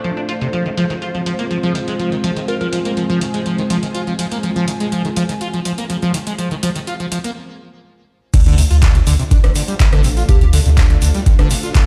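Heard through a big sound system in a bare stone room, this hypnotic, raw acid house excerpt at 123 BPM sets a squelchy, resonant acid bass riff with lush chorus and digital delay over vintage string-machine chords under a filter sweep, an overdriven analog drum machine with metallic hats, handclaps, rim clicks and crash, a warbling lo-fi pad in the background and brief catchy phrases from a plucky unison lead, until a break at 7.4 seconds gives way to a drop at 8.3 seconds where a deep overdriven kick, a round sine sub bass and a grainy tube shaker join over Dm7.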